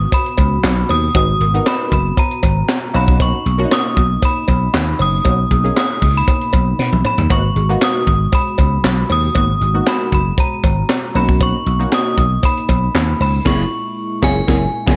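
A ringing, inharmonic FM bell carries the melody up front in this slick early-eighties boogie funk excerpt at 117 BPM in G# minor, its tone thickened by chorus and a slapback echo. A growly, punchy slap bass and a tight funk drum kit with a high-tuned snare, handclaps and gated reverb drive the groove, while a cowbell sits in the background and a detuned sawtooth polysynth comp with chorus and phaser joins at 1.1 seconds over a brassy analog pad moving between G#m9 and Bmaj7. A drum fill at 6.8 seconds and a band accent on F#9 at 13.5 seconds punctuate the passage, set in a light reverb.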